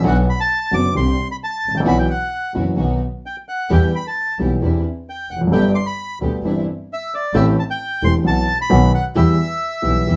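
The recording has a wet, roomy sound, with a tango ensemble playing live together in one studio and a short reverb tail. This dramatic, melancholic fragment of a longer piece moves at 132 BPM in 4/4, with a rubato feel. A reedy, boxy bandoneon sits up front and carries the melody high in its range, while a warm, woody upright piano with short sustain sits up front as well and supplies accompaniment that reaches down into the low register. A dark bowed string section adds vibrato-laden stabs in the middle range, and a clear, smooth bowed double bass holds the low end with an even vibrato. All four parts play from the start through 10.2 seconds, over a brooding progression that opens on B minor, passes through suspended and added-ninth colors, and settles on E minor.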